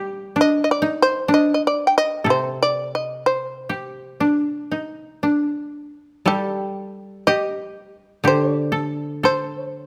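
Austere and solitary, this short fragment of Japanese traditional chamber music moves freely in rubato at roughly 57-65 BPM in 4/4. A bright, buzzing, plectrum-plucked shamisen carries the melody up front, its fretless, percussive tone sitting above two fingerpicked kotos: one traces a second line in the middle register while the other supplies a low accompaniment, both dry and woody. Close, detailed microphones and a light reverb frame the trio, and the music passes into a new section at 6.3 seconds before the cut at 9.9.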